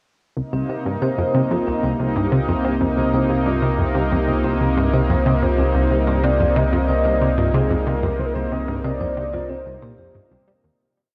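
A lush, detuned unison pad on a Cm7 chord, a tight, driving sequenced synth riff of 8 steps and a deep, round analog bass on C all start at 0.4 s, joined by a ringing vibraphone with soft mallets whose 12-step loop drifts against the bar in the background, before a soft octave-layered synth lead with phaser and vibrato sings arching motifs from 5.6 s in this expansive, mysterious piece of ambient sequencer-driven space music in C minor at 92 BPM, all bathed in a huge, wet reverb and worn, warbling cassette-tape pitch drift as it fades out from 7.3 s.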